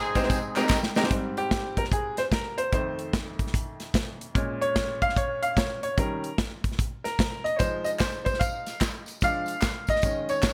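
Set in a small, lightly reverberant room, this jubilant, hopeful uptempo gospel excerpt swings at 148 BPM in Ab major, as a distant horn section with light vibrato states a brief melody until 0.7 seconds over a woody upright piano and an up-front acoustic drum kit with a tight kick. The piano then takes a solo from 1.1 seconds over rich seventh chords, and the far-off tambourine and group handclaps return at 7.6 seconds.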